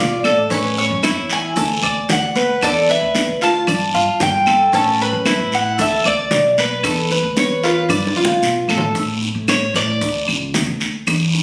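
Relaxed and sunny, this cut from a longer Cuban son and guajira piece moves in a straight 4/4. Two picked Cuban tres sit up front with metallic, double strings, some doubled at the octave: one carries the melody high in a plate reverb while the other plays arpeggios beneath it, over chords that pass through A, D and E7sus4. A woody, thumpy pizzicato upright bass holds the low end, while the percussion fills in around it: round, low-tuned bongos and compressed, saturated claves in the background, bright, high-tuned congas under soft hands, a raspy guiro, and grainy maracas kept very quiet. A drum fill arrives at 7.9 seconds, and from 9.0 seconds the tres takes a solo over an Aadd11 before the chords drop out at 10.0 seconds, with the arpeggio part stopping at 10.2 seconds. The recording has a moderate studio ambience and the slightly roomy character of a phone placed in the room.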